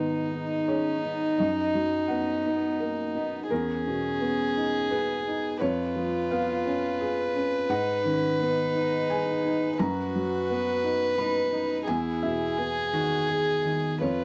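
A dry, close studio sound with a 1970s character and light reverb frames this melancholic, longing neoclassical piece for piano and strings, cut from a longer work and moving at 86 BPM in a rubato 3/4. A felt-muted upright piano, mellow and boxy with audible action noise, carries the accompaniment up front, while a solo violin, pure and floating with a soft sul tasto attack, sings the melody, and a distant bowed cello adds a quieter second line. All three parts play throughout the 14.2 seconds, cycling through G#m, Bmaj7/F#, Emaj7 and C#7/E#.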